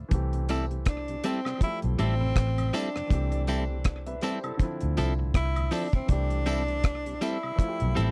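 Swung sixteenths at 80 BPM in 4/4 carry this sweet, romantic lovers rock reggae excerpt in C major: a deep, dry drum kit with a tight kick and rim clicks sits up front beside a round, punchy foam-muted bass, while clean picked guitar stabs and a background tambourine and woodblock with slapback echo join at 0.5 s, a polished grand piano and a very quiet tonewheel organ with key click and rotary speaker fill out the chords, and at 0.9 s a breathy, whispered tenor saxophone takes an intimate solo with vibrato and tape echo, the whole captured in a close, 1970s-style studio sound with little reverb.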